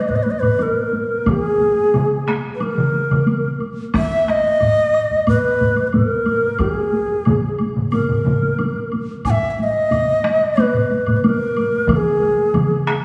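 An airy, bright shakuhachi opens this powerful, driving Japanese traditional taiko piece up front and close-miked, its bamboo tone carrying vibrato and a crisp, chiffy attack between Ab4 and Ab5, as layered taiko ensembles join at 0.1 and 1.3 seconds (some struck with heavy sticks, one hard-stick part sounding vintage and band-limited), while a woody woodblock sits in the background and the performance blooms in a wet concert-hall reverb over a small-room ambience.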